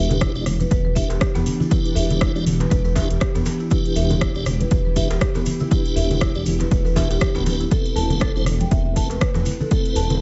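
Spiritual and warm, this afro house excerpt in E minor moves at 120 BPM with a 16th-note swing, built on a punchy, overdriven electronic kick up front, a house kit with metallic hats and rim clicks, damped thick-skinned congas, a tight, cracking djembe with metal rattles, and grainy, distant maracas. A deep, rumbling detuned saw bass pumps under a woody marimba playing arpeggios with delay, while a piping tonewheel organ with key click and fast rotary speaker adds stabs. An ethereal, airy pad enters at 0.7 seconds with sustained chords washed in chorus and phaser, moving from Em7 to Amadd9/E at 7.7 seconds in a mellow studio reverb.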